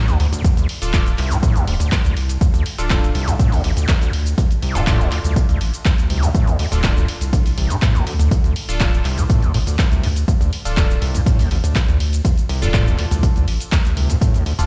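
A squelchy, distorted acid bass riff drives this hypnotic acid house fragment, with sidechain pumping and dub echo, alongside a punchy up-front electronic kick, a tape-warm analog drum machine of cabasa, handclaps and hi-hat, a deep, thick sub bass pumping in the background, and nasal, band-passed sawtooth chord stabs with phaser and dub echo, all ringing out as if played over a big sound system in a bare stone room.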